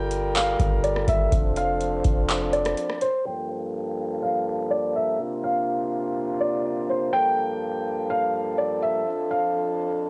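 Hazy and cassette-worn, with its top end capped at 10.4 kHz and a light reverb, this spacious, ethereal fragment of atmospheric cloud-rap drifts in a half-time feel over Gm9, F6 and C9sus4 chords. A felt-muted upright piano carries a soft, intimate melody through analog delay while a mellow, distant French horn section holds sustained chords, and up front a booming analog drum machine with a deep kick, metallic hats, handclaps and rim clicks joins a boomy, sine-toned 808-style bass. The bass drops out at 2.7 s and the drums stop at 3.1 s, leaving piano and horns under a filter sweep that runs from 3.3 s to the end.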